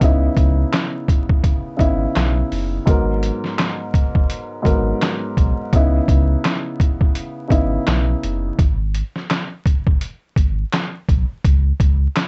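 Moody and dark, this boom-bap hip-hop fragment swings its sixteenths over a compressed, pitched-down, muffled sampler-style kit of thumpy kick, medium-tuned snare, hi-hat and handclaps sitting up front. A woody upright piano with long sustain, filtered at both ends, carries the chords until 8.6 s, while a round, sine-like sub bass holds a deep, mellow foundation through 12.1 s. The recording sounds worn, like old cassette tape, with vinyl crackle, warbly pitch drift, a dulled top end and little reverb.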